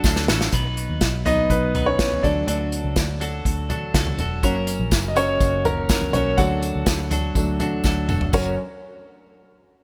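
Uplifting and anthemic, this piano-driven pop excerpt, set in a bright 1980s-style digital production, centres on an intimate concert grand with audible action noise and deep bass, which takes a solo from 0.5 s over chords moving between D, B and F#. A clean, twangy, direct-recorded electric guitar riff carries lush chorus, while a dark, foam-muted fingered bass and an up-front acoustic drum kit with a punchy kick and medium-tuned snare hold a straight 4/4 groove, with drum fills framing the piano solo. A very quiet, jingly tambourine returns at 4.4 s, and light reverb lends the mix a small-room airiness.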